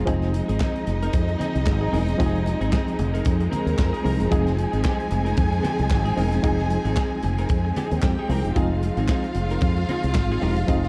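Dark, lightly reverberant production frames this glamorous, sultry disco excerpt at 113 BPM in F minor, resting on a single Fm7 chord with a gentle sixteenth-note swing. A growly, punchy fingered electric bass sits up front over a modern studio drum kit of kick, medium-tuned snare, hi-hat and handclaps, while very quiet ringing congas enter at 0.1 seconds and crisp group handclaps at 0.6 seconds. An expressive bowed violin section carries the second line above lush, distant symphonic strings holding sustained chords, with a compressed clean electric guitar under analog chorus and a reedy electric piano in fast tremolo tucked in the background.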